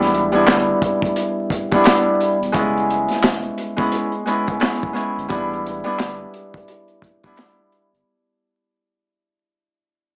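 In this reflective, moody boom-bap hip-hop excerpt, a ringing, fingerpicked Celtic harp, filtered through cassette-tape colour, sits up front beside a crunchy, gritty breakbeat kit of tight kick, medium-tuned snare, hi-hat and handclaps with a dark, rolled-off top. A deep, round sine sub bass hums in the background over suspended ninth chords, with a swung feel throughout. The dry, lo-fi recording carries vinyl crackle and a small-speaker character in a moderate studio space, and the music fades out from 2.5 s to its end at 8.1 s.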